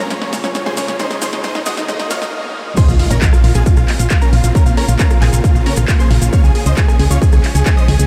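Opening on a huge, euphoric supersaw lead over a lush unison pluck, a shimmering octave-up pad and grainy maracas, this driving, soaring uplifting trance excerpt in Bb minor at 135 BPM builds with a fill from a punchy analog drum machine and a very quiet riser, swell and impact before a brief stop, then drops at 2.8 seconds into a heavy, tape-warm kick and a round, dark FM bass, with sidechain pumping on the lead, pluck, pad, bass, hats and cymbals, analog delay on the lead and pluck, and a dreamy mix soaked in long ambient reverb.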